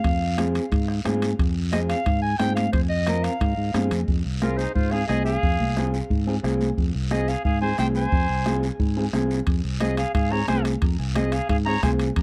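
A driving 4/4 cumbia groove at 178 BPM in F minor rolls on a soft-beater bombo, thick-skinned high-tuned congas set back in the room, a raspy guiro and ringing metal-shell timbales that drop out at 4.1 seconds and return at 9.5 seconds, all anchored by a round, punchy fingered electric bass up front, while a dark, clean electric guitar with spring reverb plays accompaniment beneath a clear, classical-style clarinet melody carrying tape echo, and a vintage-toned trumpet with scooped notes enters at 4.4 seconds as a second line, giving this passionate excerpt a dry, close 1970s-style studio sound.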